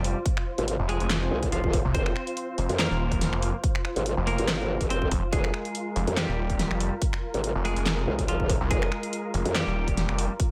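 A digital ambience wraps this short cut from a longer heavy wobble dubstep track in a dense, produced sheen, and the mood is menacing and heavy, with a swung, half-time feel over a single minor chord. Up front, a snarling distorted saw bass growls with detuned unison, a moving notch and overdrive, and from 0.6 s a second growl bass joins it, wobbling through a formant filter with chorus and saturation until 9.6 s. A punchy electronic kick drum lands from 0.3 s, layered with a big-room dance kit of finger snaps, handclaps, hi-hat and a huge snare. Behind them, lush supersaw chords sustain through sidechain pumping, a low-pass filter and vintage 12-bit sampler grit. On top, a clean, picked semi-hollow electric guitar carries the melody, its bright, compressed tone trailed by digital delay.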